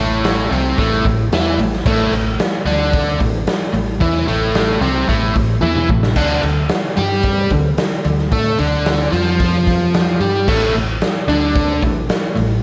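Blues rock in a power-trio, southern rock vein, this short cut from a longer piece has a raunchy, gritty mood and a straight 4/4 feel. An overdriven, double-tracked electric guitar sits up front with a dark, picked riff, backed by a round, foam-muted vintage electric bass and a raw garage drum kit whose punchy kick, medium-tuned snare and rolled-off top ring through a bright stone room. A drum fill at 5.6 seconds leads into the shift from A5 to D5, returning to A5 at 10.5 seconds, all bathed in lush hall reverb for a big arena sound.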